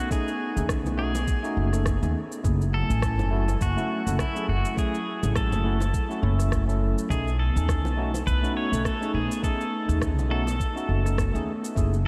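A woody, growly upright bass sits up front in this smooth, relaxed sunset chillout excerpt at 103 BPM with a gentle sixteenth-note swing, under a bright, twangy pedal steel guitar melody with tape echo, a barky, overdriven tine electric piano, a soft, breathy pad with chorus in the background, a knocking electronic kick, a tape-toned electronic shaker and rim click, and very quiet, low-tuned bongos, all drifting between B13 and F#m9 in a dreamy mix soaked in cathedral reverb.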